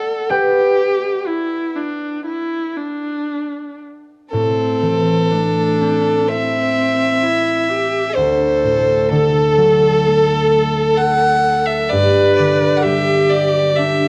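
Worn, warbling cassette tape with a wavering pitch drift colors this recording, heard in a moderate recital hall with a reverb time of 1.6 seconds. It is a Celtic folk slow air in 4/4, played rubato, with a longing, mournful mood, and it is cut from a longer piece. A ringing, fingerpicked concert harp carries the accompaniment throughout, while a boxy viola, played by one bowed player, adds an expressive second line with vibrato and portamento. At 4.3 seconds a rich, earthy fiddle takes up the melody, bowed by a single player with light vibrato and sitting slightly louder than the other parts. Beneath it the harmony moves from Am to D7 and then settles on G at 11.9 seconds.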